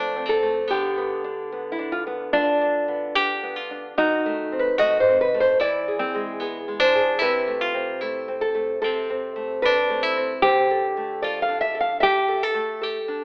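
A romantic duo for two nylon-string guitars in A minor, this solemn, melancholic excerpt moves at a rubato 74 BPM: an up-front, deep, fingerpicked classical guitar carries the melody while a bright, fingerpicked partner supplies the accompaniment through harmonies from F through diminished chords to E, Am/C and Dm7, all set in a moderate recital-hall reverb and narrowed by a telephone-like sound.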